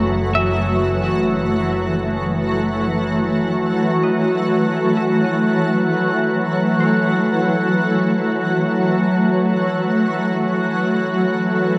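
A shimmering, ethereal pad holds an F#m7 chord up front from the start of this serene, reflective ambient excerpt at 65 BPM in F# dorian. Alongside it from the outset are an earthy, close bowed double bass section and a glassy, pure glass harmonica sitting high in the background. A bright, clean semi-hollow electric guitar plays picked arpeggios behind them through tremolo, diffuse delay and shimmer reverb, while the bass stops at 3.1 seconds, a tense, string-like drone with vibrato enters at 4.8 seconds, and the guitar stops at 7.7 seconds, all within a dark production bathed in a cathedral reverb with a 5.4-second decay.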